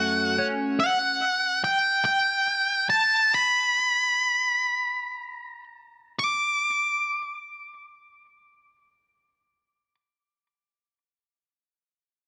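An octave-fuzz lead guitar carries the melody from start to finish, its distorted, fuzz-soaked tone sitting up front and trailed by tape echo as it moves between F#5 and D6. This brooding, cathartic rock passage is cut from a longer piece and moves in a slow 6/8 at roughly 39 to 49 dotted-quarter beats per minute. It opens on an F# minor chord, with a bright, twangy twelve-string electric guitar playing clean, compressed arpeggios under a subtle chorus and tape echo, but that part drops out at 0.8 s, leaving the harmony unstated. From there the tempo slows until 6.2 s, where a new section begins and the lead presses on alone. A moderate, large studio reverb gives the sound a spacious air that suits its mood of release.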